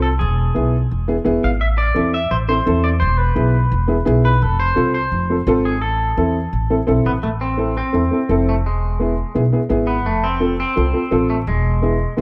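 Fiery and passionate, this straight-feel cumbia excerpt in A harmonic minor moves at 170 BPM. A twangy, picked clean electric guitar carries the melody with spring reverb, over a worn, slightly detuned upright piano with audible action noise and a thumpy pizzicato upright bass on gut strings, all up front in a dry, close 1970s-style studio sound, with a second section arriving at 7.2 seconds.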